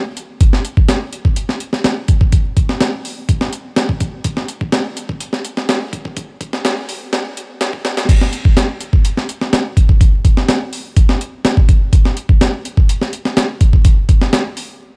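A straight 4/4 breakbeat at 125 BPM drives this swaggering, energetic cut from a longer piece, played on a sampler-style drum kit of kick, snare, hi-hat and crash that sits up front from 0.2 s to 14.7 s. The kit sounds gritty, compressed and pitched up, with a thumpy kick, a medium-tuned snare, a tape-warm tone and a touch of studio reverb. A build-up with a filter sweep runs until the drop at 8.1 s, while vinyl crackle and a high-pass filter color the dry recording, whose top end stops at 10.8 kHz.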